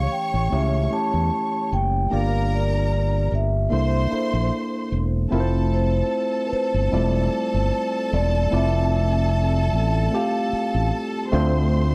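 An up-front fingered electric bass, amped and direct, anchors this smooth, lush soul excerpt with a light sixteenth-note swing. A mellow, ringing vibraphone played with soft mallets and its motor off carries the melody until 10.9 s. Around it sit a worn, slightly out-of-tune tine electric piano heard through its built-in speakers, and a bowed symphonic violin section with vibrato that plays a second line lower in the mix. The dry, close 1970s-style studio sound moves through A7, Gm7 and C13 to a long Fmaj7 when the second section arrives at 5.3 s, closing on Dm7.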